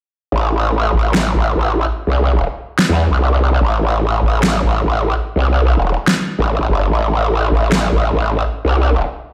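Heavy wobble dubstep in A minor at a half-time 146 BPM, tuned slightly flat, this chaotic, aggressive excerpt is driven by a growling, formant-filtered bass with saturated overdrive and chorus, sitting up front from 0.3 s, while a huge, layered, overdriven electronic snare punches in from 1.1 to 7.8 s, all played through a big sound system in a bare room with large studio reverb.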